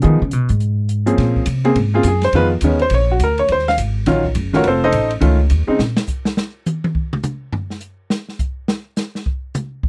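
A clear, intimate upright piano with audible action noise and short sustain leads this late-night, swinging jazz piano trio excerpt in Bb minor at a brisk 208 BPM, after a brief opening solo from the woody, pizzicato upright bass, while an airy acoustic drum kit with dark cymbals and a boomy kick takes a solo at 5.8 s, all in a dry, close 1970s-style studio sound.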